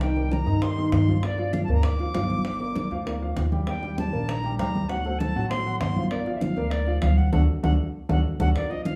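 A driving, straight 4/4 pulse at 197 BPM propels this sultry Afro-Cuban jazz fragment in G minor, where round, low-tuned bongos sit close and dry and bright, damped congas sit close and dry in the background beneath a thumpy, woody pizzicato upright bass up front, a grand piano with long sustain and audible action noise accompanies through Cm7, Gm7, Ebmaj7 and D7, and a pure, reedy concert flute with vibrato carries the melody until a band accent at 7.3 seconds and a drum fill at 7.8 seconds end the passage, heard from further back in a small club room with a wet reverb.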